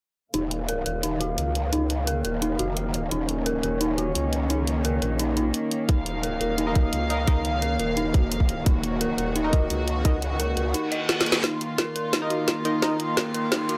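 Dark technical drum and bass with an aggressive, tense mood, this piece opens at 0.3 s with a rich, floating string section holding sustained chords while an eerie, inharmonic synth bell spins arpeggios through chorus and delay, both parts pumping under sidechain and shaped by a filter sweep. A growling, detuned bass with tube saturation sits up front, wobbling through a formant filter until it drops out at 10.7 s. The drum kit pairs a woody snare with bright hats, re-recorded in a small room, and a tight electronic kick joins at 5.9 s. A nasal, band-passed sawtooth chord stab with lush chorus and delay colours the middle stretch, and a reverse cymbal and riser sit in the background to lead into a drum fill and a closing build-up. Light digital reverb gives the mix a compact sense of space.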